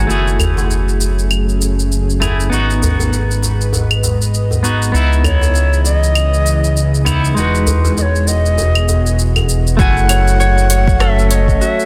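Organic downtempo at 99 BPM in F# dorian, this earthy excerpt swings gently over a clean hollow-body electric guitar with harmonic tremolo and delay, a tense string-like drone with vibrato, a smooth, up-front synth bass, overdriven electronic drums with shaker, claves and rim click, a cracking djembe with metal rattles in the background, and fingerpicked Celtic harp arpeggios that ring at the start and return at 9.8 s, while a breathy, reedy ney carries the melody from 5.2 s and a deep overdriven kick drops in at 9.8 s, all in a dense, heavily limited master with sidechain pumping on the guitar, drone and bass.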